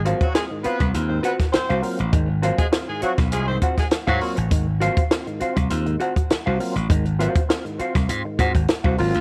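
A bright, punchy slap bass opens this gritty, playful funk fragment at 101 BPM, sitting up front over a single Ab13 chord in Ab mixolydian. A compact cocktail drum kit joins almost at once, its high-tuned snare and kick captured naturally in a tight booth, while a dark, clean hollow-body jazz guitar fills in the accompaniment. A full, lightly overdriven tonewheel organ adds percussive stabs, coloured by chorus vibrato and a slow rotary speaker. A tight horn section carries a smooth-topped second line with light vibrato and octave doubling until 4.3 seconds. At 9.0 seconds, just at the close, a breathy, raspy alto saxophone steps forward with a brief melody note, and the recording sits in light reverb and small room ambience.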